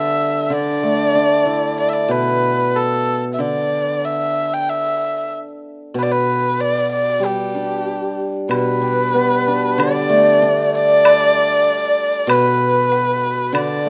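This Chinese traditional piece for chamber ensemble is pastoral and festive, moving in a loose, rubato 2/4 around 94 BPM, and is cut from a longer work. A dark, woody erhu carries the melody up front, its bowed line shaped by vibrato, portamento and a soft attack. Beneath it, a hammered dulcimer plays shimmering, ringing accompaniment in a lower register, also placed up front. At 8.5 seconds the music moves into a new section as a mellow bamboo xiao enters with an airy, tongued second line that sits distant and very quiet. A woodblock joins there too, sounding in the background. The recital hall adds a moderate reverb around close, detailed microphones.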